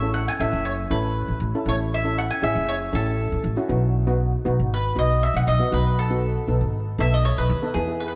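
Calypso in a carefree, sunny mood, cut from a longer piece and set in straight 4/4 time. A picked mandolin carries the melody as a solo through the opening 7.8 seconds, its double strings giving a mellow, round tone that sits up front. Beneath it, a double seconds steel pan played with medium rubber sticks supplies the accompaniment with a metallic, shimmering sound and a boxy small-room character. An acoustic upright bass, plucked pizzicato on steel strings, anchors the low end with a woody, thumpy, warm tone that is also placed up front. The harmony moves from A to B at 3.7 seconds, and a moderate plate reverb surrounds the group, which is heard from further back in the room.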